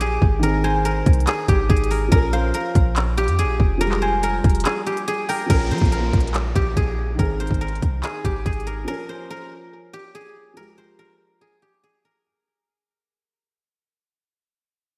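A silvery guzheng carries the melody, its fingerpicked notes ringing through a delay over a hard-hitting, menacing half-time trap groove cut from a longer piece. Beneath it, a felt-muted upright piano with a boxy, intimate tone, audible action noise and an analog chorus plays the accompaniment, while a deep, boomy 808-style bass sits dark and up front. The trap kit hits hard with a clipped kick, crisp hats, handclaps and crash cymbal, all roughened by vintage 12-bit sampler grit. From 0.6 seconds a soft, round, wave-folded pluck drifts in the background with chorus and delay, lasting until a short break gives way at 5.5 seconds to a fade-out marked by an electronic downlifter. The drums drop out at 8.8 seconds and the bass and downlifter at 8.9, leaving the guzheng and piano to trail off in a dreamy mix soaked in lush hall reverb.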